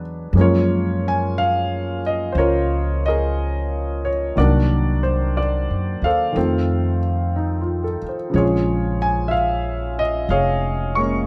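Close, detailed microphones and a light reverb give this short passage from a longer piece an intimate, up-front presence, with the action noise of the concert grand audible beneath the notes. It is a wistful, melancholic jazz ballad in Bb minor, moving at a slow 60 BPM in 4/4 with a gentle swing on the eighth notes. The piano, natural in tone with deep bass, provides the accompaniment from Db3 up to Db6, while a pizzicato upright bass on gut strings sounds woody, dark and thumpy down between F1 and Gb2. Both instruments play together from the opening to the close at 11.3 seconds, sitting near the front of the sound. The harmony drifts from Gbmaj9 through Cm7b5 and F7 before settling on Bbm7 at 8.3 seconds.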